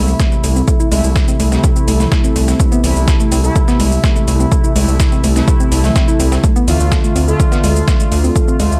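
Melodic techno at 125 BPM in A harmonic minor, dark and driving, moving from Am/C to Dm at 6.4 seconds, with a punchy overdriven electronic kick up front and a gritty, resonant synth bass pumping underneath, bold brassy analog synth stabs and woody wave-folded pluck arpeggios, both chorused and delayed, riding over an overdriven deep house kit of metallic hi-hats, shaker and toms and a dusty, compressed sampler-style kit adding filtered hi-hat and snare, all in a dry sound.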